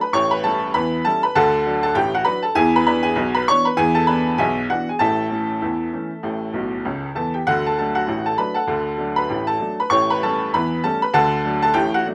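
A clear, woody upright piano plays alone and up front throughout this jaunty, cheerful ragtime passage in D major, moving at 98 BPM in 2/4 with a swung sixteenth-note feel. Its part spans from the low bass register to the upper treble, moving through A7, D, E7 and A before A7 settles back home to D, with a short fill at 6.5 seconds. A moderate club reverb gives the piano an open sense of room, and the passage is cut from a longer piece.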